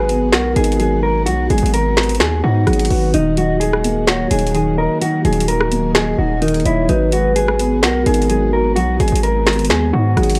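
A worn, warbling cassette-tape sound colours this short, dry excerpt of brooding, melancholic trap-leaning hip hop, its pitch drifting as it moves at 128 BPM in a half-time feel. A mellow, clean electric guitar carries the melody through a low-pass filter, while a hollow, woody clarinet-like synth lead with vibrato, chorus and delay sits in the background as a second line. A dark concert grand piano, boxy and intimate with audible action noise, accompanies under a low-pass filter, and an ethereal pad of detuned saw and triangle voices holds sustained chords behind everything through its ensemble chorus and built-in reverb. Up front, a punchy, heavy 808-style bass anchors the low end, joined from 0.1 s by an electronic trap kit of finger snaps, metallic hi-hats, rim clicks and a woody snare. The harmony moves from Abm7 to Ebm at 3.1 s and returns to Abm7 at 6.9 s.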